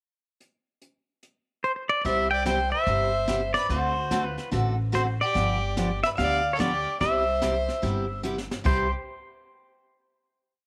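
Western swing country in C major at 145 BPM, playful and swinging, where a small-room brush kit with dark cymbals, a high-tuned snare and a boomy kick opens the pickup at 0.4 s with backbeat and snare sweeps; a twangy, compressed pedal steel with slapback echo and volume swells carries the motif-based melody up front from 1.6 s; and from 2.0 s a woody pizzicato upright bass plays two-beat root and fifth while a full-bodied dreadnought picks four-to-the-bar rhythm with finger squeak and, just after, a clear, intense bowed fiddle with light vibrato adds a harmony line mostly in thirds, set in a moderate spring reverb, before a drum fill leads to the final chord.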